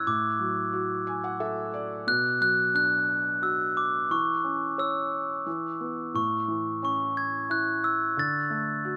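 Gentle and sleepy, this short lullaby in children's-music style moves in a steady, straight three-beat metre. A glockenspiel struck with soft plastic mallets carries the melody, its bell-like, ringing tone sitting up front in the mix. Beneath it, a felt-muted upright piano supplies a hushed, intimate accompaniment with a vintage character, adding a brief fill between 0.7 and 2.1 seconds. The harmony drifts from a D chord over A through B minor and C-sharp minor before settling on A and then D near the close. Captured outdoors with little reverb, the sound stays close and dry, and the passage is cut from a longer piece.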